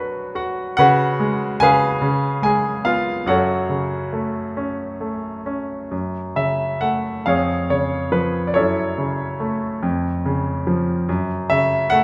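Melancholic and reflective, this short excerpt of lyrical classical solo piano unfolds in 6/8 at a rubato 47 BPM in F# harmonic minor, moving to F# minor at 5.9 seconds. A clear, polished concert grand with deep bass and short sustain sits up front in a moderate concert hall reverb, spanning E#2 to C#6. It opens with a brief piano fill before the harmony settles on F#m at 3.3 seconds, and a new passage begins at 5.9 seconds.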